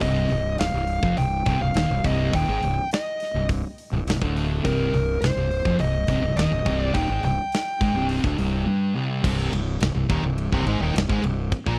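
A brooding, sludgy stoner and doom metal passage, cut from a longer piece, opens with an up-front fuzz lead guitar singing a melody through tape echo over two thick fuzz guitars grinding out a riff in the background (one of them dark), a growly overdriven fingered bass placed up front, and a big acoustic rock kit with tight kick, medium-tuned snare, hi-hat, ride and crash sounding in a big room with a rolled-off top; the lead stops at 8.1 seconds, and at 9.2 seconds one fuzz guitar drops out as a brilliant, double-tracked overdriven electric guitar enters on the riff, all captured with a dry, close 1970s-style studio sound.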